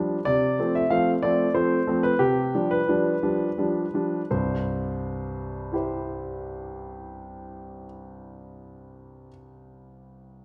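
A clear grand piano plays alone in this cheerful, graceful excerpt from a classical-period sonatina in C major, set in 3/4 with a straight feel at 81-95 BPM. The instrument sits up front with an intimate, natural character, and the mechanical noise of its action can be heard beneath the notes, which range from C2 to F5. Over the first 4.3 seconds the tempo slows as the harmony moves from F/C at 0.3 seconds to G7/C, before a second section begins on a C chord at 4.3 seconds. A wet recital hall reverb with a 1.7-second decay surrounds the piano, giving the close sound a sense of space. The tuning sits slightly below standard pitch, at A4 = 438 Hz.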